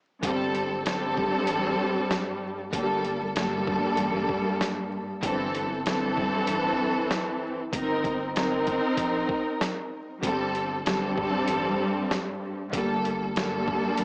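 Boom-bap hip-hop in G minor at 96 BPM with a swung 16th feel, reflective and moody, where a lush, bowed string section sits up front with vibrato and portamento over a gritty, pitched-down sampler drum kit with a thumpy kick and medium-tuned snare, while a deep, saturated sub bass hums in the background, all colored by vinyl crackle, light reverb and a dry, small-speaker character, with cassette tape on the strings, in this cut from a longer piece.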